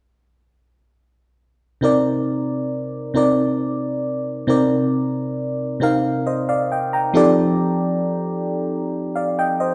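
A glassy FM electric piano with a bell-like attack, a noise layer and chorus takes the solo up front from 1.8 to 9.7 seconds in this sultry, late-night R&B fragment in C dorian, moving from Cm7 to F13 at a slow 45 BPM in 6/8, its decaying tones spanning C3 to Bb5 inside a wet large-studio reverb where a faint mains hum hints at a band playing live in one room.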